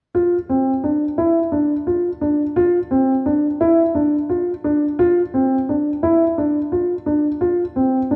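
Contemporary instrumental in a shimmering, hopeful mood, moving at 173 BPM in eighths over a straight 7/8 metre and tuned to A4 = 444 Hz. A dark baby grand piano plays arpeggios between C4 and F4 from 0.1 to 8.2 seconds, its mellow, boxy tone sitting intimate and up front with short sustain and audible action noise. The sound rests in a wet recital hall reverb and carries the warbly pitch drift of worn cassette tape, in this brief cut from a longer piece.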